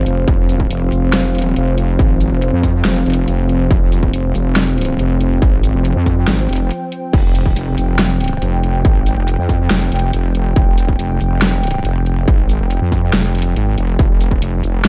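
A heavy, saturated sawtooth wobble bass with a detuned, chorused edge sits up front in this aggressive, menacing slice of half-time wobble dubstep, cut from a longer piece. A distorted electronic kick and a layered drum kit with a huge snare, bright hi-hats, shaker and crash cymbal hit hard alongside it, pausing for a brief break at 6.7 seconds. Beneath them, a lush, thick unison pad of detuned sawtooth and square waves with ring modulation holds slow-attack chords that pump against the sidechain, all in a dark, dry production.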